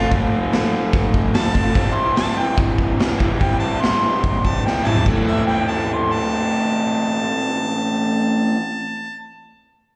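A straight 4/4 pulse at 145 BPM drives this menacing, gritty garage rock fragment in A minor, tuned to A4 = 445 Hz, with the chords moving from F to C before landing on Am at 5.1 seconds. Up front, a clear pop-style harmonica solo soaked in overdrive, plate reverb, slapback and tape echo rides over a picked, double-tracked electric guitar riff that sounds overdriven and lo-fi, while an acoustic drum kit with a punchy kick, a medium-tuned snare, a bright stone-room pump and 12-bit sampler grit plays until 5.2 seconds, capped by a fill from 4.6 seconds. The whole performance comes across as a live gig heard through the venue's PA, framed by moderate club reverb and a recital hall ambience.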